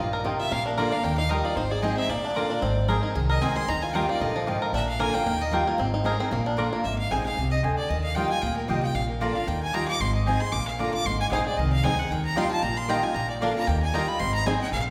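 A brisk 228 BPM in 4/4 drives this rustic, joyful bluegrass fragment, its eighth notes carrying a light swing as the harmony cycles through Ebadd9, Bb and Ab. The clear fiddle takes the melody and solos throughout, sitting close and up front with a biting, intense tone, light vibrato and an airy bow. Beneath it, a full-bodied dreadnought steel-string guitar is picked as accompaniment, and a pizzicato upright bass with steel strings supplies a dark, growly low end. A twangy, percussive banjo played with fingerpicks adds arpeggios, dropping out at 6.8 seconds and returning at 11.3 seconds. The mandolin's double strings give woody stabs from the background. A reverberant hall sound rounds the whole performance, which is cut from a longer piece.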